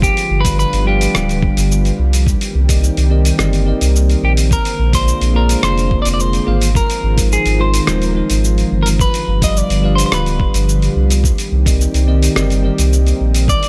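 A round, deep sub bass sits up front in this smooth, sunny sunset chillout cut from a longer piece, under a clean picked electric guitar melody with digital delay and shimmer reverb, a lush, warbling unison pad of detuned sawtooth and square waves with chorus, a bell-like tine electric piano entering at 0.4 seconds, and a gritty, overdriven sampler-style soul kit of cabasa, hi-hat and rim click paired with a thumpy electronic kick, both re-recorded in a small room, as the harmony moves through G7, Cm7, Bb9 and Ab6.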